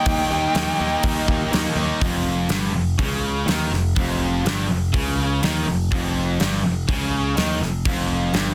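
A gated 80s drum kit sits up front in this menacing, aggressive hard rock excerpt at 123 BPM in a straight 4/4, its fat snare, tight kick and hi-hat punching through a big, airy, polished gated room. A biting, overdriven lead guitar with analog delay sounds a brief high melody that ends at 1.5 seconds. Beneath it, a cranked stack guitar and an overdriven electric guitar drive picked riffs from the background, joined by a very quiet, scooped, double-tracked distorted guitar. A bright, growly, punchy picked bass, recorded direct, pins down the low end. The harmony moves from Eb to Eb9/F at 2.0 seconds, all under light reverb and a dense, heavily limited modern master.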